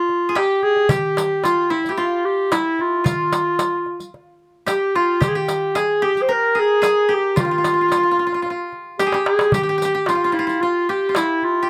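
Warm and passionate, this short excerpt from a longer Arabic maqam ensemble piece moves at 111 BPM in a straight 4/4, with a classical-style clarinet carrying the melody up front, its tone distant and roomy. Beneath it, a dry, woody koto plucked with fingerpicks plays a second line, while a crisp, small metal-shell darbuka struck with hard hands and a close riq with bright jingles supply the percussion, the riq entering at 0.9 seconds. A drum fill at 9.0 seconds stands out before the ensemble plays on under a light reverb.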